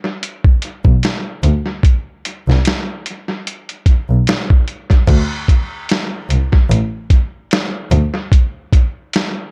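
An echo-heavy mix with little reverb frames this nostalgic, hazy lo-fi hip hop fragment at 74 BPM in swung 4/4, where a muffled, compressed sampler-style drum kit of thumpy kick, medium-tuned snare, hi-hat and crash, treated with analog delay and re-recorded in a large room, sits up front from 0.2 seconds, joined at 0.8 seconds by a single bowed double bass, boxy and expressive with vibrato and portamento, that plays until 8.0 seconds.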